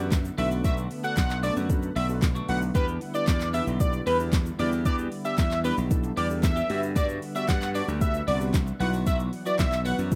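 Energetic yet bittersweet dance-pop in E minor at 114 BPM, this excerpt from a longer piece opens with a fat-snared electronic R&B drum kit and a gritty, overdriven slap bass pumping up front, while a grainy egg shaker, twangy clean twelve-string electric guitar riff, detuned square-and-sawtooth keys and a warbling vintage pad sit in the background. At 0.4 s a bold, retro octave-doubled sawtooth lead carries the melody with vibrato, chorus, plate reverb and digital delay over a Bm7, Em7, Gmaj7 and Bsus4 progression. The sound is a rough home demo mix with little reverb overall.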